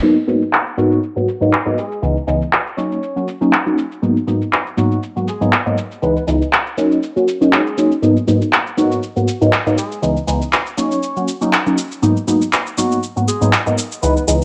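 A punchy, detuned polysynth plays a dark, funky comp with chorus, phaser and low-pass filtering, alongside up-front electronic shaker and handclaps that carry a filter sweep, opening this sensual, nostalgic filtered disco house piece at 120 BPM in G# minor with a light 16th-note swing. From 0.8 seconds a brilliant horn section with vibrato and octave doubling carries the melody, set back in the mix and softened by its own low-pass filter. The harmony cycles through G#m9, C#m7 and D#m7 under a moderate plate reverb.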